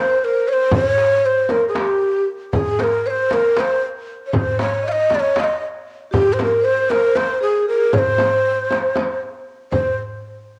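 A breathy, end-blown ney carries the melody up front with vibrato and a crisp attack, shadowed by a very quiet, ringing vibraphone with fast motor vibrato, before a deep metal-shell darbuka, sounding distant, and a close, dry frame drum enter at 0.7 s in this hypnotic, soulful Turkish makam excerpt in C makam kurdi, moving in 7/8 at 233 BPM through wet spring reverb on a cassette home recording.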